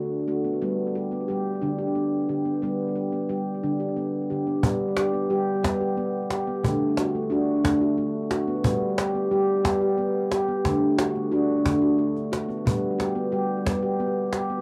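A ringing stainless-steel handpan opens this calm, dreamy stretch of meditative world music, played up front with the fingertips in flowing arpeggios between D3 and G4, its tone carried by analog delay and plate reverb as the harmony moves between D and G in G major at 60 BPM in 6/8. At 4.6 seconds a snappy cajon with snares joins, struck with hard hands and also sitting up front, and both play on until the cut at about 14.6 seconds. The home cassette recording places them in a small, boxy booth with a short, wet ambience.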